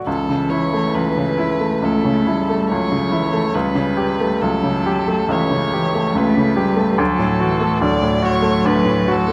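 Tender and serene, this slow romantic movement for piano trio moves with a flexible, rubato feel in four. A bright baby grand piano opens at 0.0 seconds and carries the accompaniment, its polished, brilliant tone sitting up front with a short sustain. The violin joins at 0.1 seconds with the melody, its rich, smooth, even bowed line colored by vibrato. Beneath it, a single cello plays a second line with a soft attack, expressive portamento and vibrato, its close, warm sound rounding out the middle register. The harmony rests on A7 over C# before settling onto D at 7.0 seconds, and a moderate recital hall reverb gives this short fragment of a longer piece a gentle sense of space.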